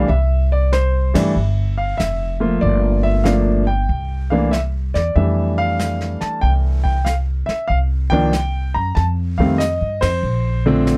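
A woody, thumpy pizzicato upright bass and an intimate concert grand piano, its action noise audible as it carries the melody, open this playful, sophisticated swinging jazz piano trio fragment, with a small-room brush kit of dark cymbals and a boomy kick joining at 0.1 seconds, the band hitting accents together at 1.0 and 9.9 seconds as the harmony moves from C through Gm9 and Fmaj13 to a closing Bbmaj9, all captured in a dry, close 1970s-style studio sound.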